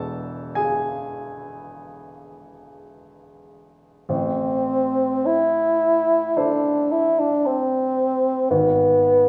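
A dark bassoon with vibrato and a smooth top sings a solemn, melancholic melody between B3 and E4, entering up front at 4.1 seconds over a warm, polished grand piano that plays alone before then. This classical romantic duo moves in a rubato 4/4, with the short-sustained piano accompaniment shifting from E to A minor and then to a rootless E/G#. A wet recital-hall reverb in a church or concert hall surrounds the two instruments in this fragment cut from a longer piece.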